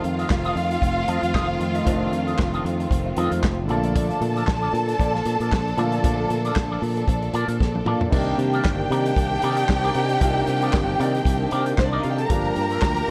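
Sultry, danceable disco at 115 BPM in C dorian with a light swing, where an up-front, lush string section sings a vibrato-laden second line with expressive portamento over smooth, even sustained string chords, a growly, punchy fingered bass, a twangy wah-filtered clean guitar, a deep background grand piano and a tight soul drum kit with dark cymbals and handclaps, whose fill at 7.6 seconds leads into the Cm9 passage at 8.1 seconds, all in a small, lightly reverberant room.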